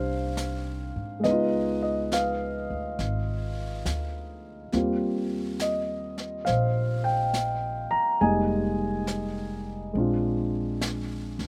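A dark, mellow grand piano with long sustain and a woody pizzicato upright bass open this romantic, late-night jazz ballad at a slow 69 BPM with a swung feel in Eb major, with airy brushed snare and hi-hat joining at 0.4 seconds as the harmony moves from Abmaj7 through Db9, Eb69 and Fm11 to Bb9 in this dry passage cut from a longer piece.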